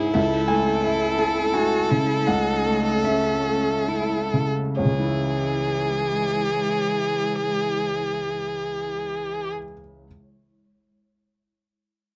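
A dry, close recording in a 1970s studio style frames this short excerpt of neoclassical piano and strings, a longing, reflective piece in C# minor tuned to A4 = 436 Hz. It moves in a rubato 3/4 between 65 and 87 BPM and slows through its first 4.8 seconds. Up front, a soft, intimate felt-muted upright piano accompanies a rich, expressive bowed violin that carries the melody with vibrato and portamento. A smooth cello adds a second line, while a glassy FM pad with chorus, built-in reverb and phaser holds dark, ethereal chords in the background. The harmony rests on A/C# before turning to C#m at 4.8 seconds, and the piano sounds alone at the close until 10.1 seconds.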